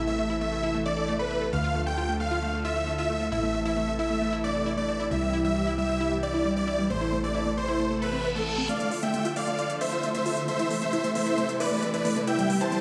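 A lush digital hall ambience surrounds this bittersweet, euphoric uplifting trance excerpt in A minor at 134 BPM, where a huge, thick, detuned supersaw lead sits up front with vibrato and dub echo over a soft-attack, evolving pad of filtered supersaw chords moving through Am, Dm and C. A bright, punchy unison pluck spins arpeggios with its own dub echo, while a round, dark FM bass anchors the low end until 8.7 seconds. A very quiet reverse cymbal and riser slip in at 8.0 seconds, and from 8.7 the build-up begins as tape-warm, smooth electronic hi-hats join.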